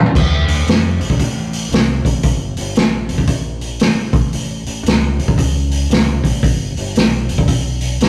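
A rough rehearsal-room recording with tube saturation and light reverb frames this gritty, heavy slice of blues rock power-trio playing with a southern rock edge, cut from a longer piece and moving at 115 BPM in 4/4 with a swung eighth-note feel. A vintage acoustic drum kit sits up front, opening with a fill and driving on crash, hi-hat, snare, toms and a punchy kick, its dark cymbals and rolled-off top giving it a mid-forward, vintage character. Beneath it, a growling fingered electric bass, overdriven and played low from 0.0 seconds onward, adds a punchy, amped weight to the groove.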